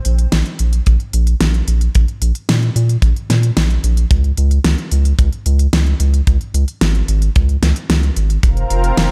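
A round, deep analog bass sits up front from the first moments of this nocturnal, moody synthwave excerpt, its dark sine-and-triangle tone moving between F1 and Bb2 at 111 BPM in a straight 4/4. A layered electronic pop kit with a fat snare and crisp hats carries a tape-warm, produced character, dressed in studio and gated reverb. An acoustic kick, tight, airy and polished, joins at 0.9 seconds and stays prominent until 8.5 seconds. The harmony shifts from an open, chordless start to Db5 at 4.1 seconds. At 8.4 seconds a lush, thick unison pad of detuned sawtooth and square waves rises in slowly on an Fsus4 chord, bright with chorus and sidechain pumping. A small room ambience surrounds the whole short passage, lifted from a longer piece.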